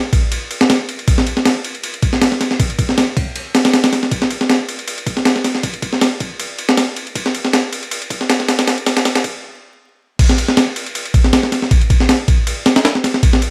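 Swung sixteenth-note breakbeats in 4/4 drive this atmospheric, nostalgic drum and bass fragment, where an up-front, gritty, pitched-up and compressed sampler-style kit of thumpy kick, medium-tuned snare, ride and crash builds under a filter sweep and light reverb amid vinyl crackle, halts briefly at 9.4 seconds, then drops back in at 10.2 seconds.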